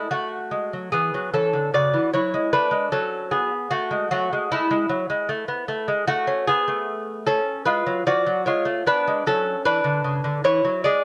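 A solo lute opens this 11-second excerpt from a longer baroque-style classical dance, its fingerpicked gut strings sounding delicate and up front, with paired courses and some octave-doubled strings adding shimmer. The playing moves with a gentle rubato in common time, drifting through chords from A to F#m, then Amaj13 at 6.1 s and a darker Fdim7 before settling on F#5. A moderate spring reverb lends the radiant, serene mood a soft halo.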